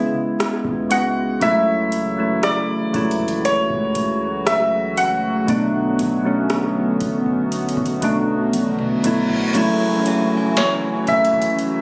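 Contemporary R&B at a slow 59 BPM in F# minor, this short cut from a longer piece feels sensual and longing. Soft, round electric-piano-like synth keys with chorus sit up front from the start, laying down chords that move from C#m7 to F#m7/C# and on to Bm7, while a deep, sine-like 808-style bass sustains low in the background. A booming analog drum machine enters at 0.4 seconds with a deep kick, crisp snare, metallic hats, rim clicks, toms and crash, its sound tape-warm. A clear grand piano carries the melody high in its range with digital delay, and a hollow, flute-like pad with chorus fills in sustained chords from 1.4 seconds. A drum fill and a reverse cymbal with a downlifter lead into a new section at 9.6 seconds on F#m7. At 10.1 seconds an inharmonic, ringing FM synth chime adds ensemble chorus and delay in the background, all set in light reverb with a slightly roomy, phone-captured character.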